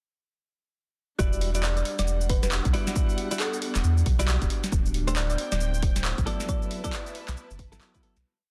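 A moody, late-night two-step UK garage piece in E minor at 136 BPM drops in at 1.2 seconds with a punchy layered kick, overdriven analog drum-machine claps, snare, shaker and swung hats, a thick saturated sub bass with sidechain pumping, clean compressed electric guitar stabs with delay, and dark, softly bowed chamber strings in the background, while a round, tine-like synth pluck with chorus and delay plays short phrases from 1.6 seconds, an ethereal, very quiet pad joins at 2.5 seconds, and the dense, heavily limited mix fades out from 5.9 seconds over Em9, D7sus4 and B7sus4 chords.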